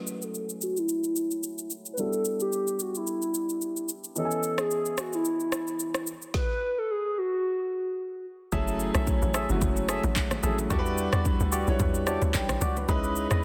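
This deep, hypnotic amapiano excerpt opens with a hollow, woody clarinet-like synth lead carrying the melody through a filter sweep over a dark, boxy grand piano and an up-front deep house kit of deep kick, woody snare, handclaps, rim click and shaker, at 110 BPM with a lightly swung 16th feel. At 8.5 seconds the drop arrives as the lead falls away and a punchy, tight log drum bass, nasal percussive organ stabs and very quiet, dry congas and bongos join in over F#m9, Em9 and C#m9 chords. A grand piano fill at 11.8 seconds adds interest before the cut, all set in light digital ambience under a dense, heavily limited modern master.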